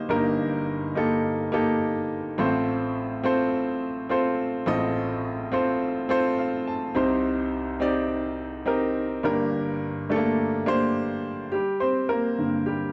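Earnest and driving, this short pop passage in G minor moves at 105 BPM with a straight 4/4 feel, carried entirely by a solo upright piano whose woody, short-sustained tone sits up front across a range from G1 to A5. The harmony travels from Eb/G through F/A, Cm and Gm before settling on Gmadd11, with a piano fill at 6.1 seconds and a brief solo turn beginning at 11.5 seconds. A moderate large-studio reverb and a dark production give the sound a sense of depth in this fragment cut from a longer piece.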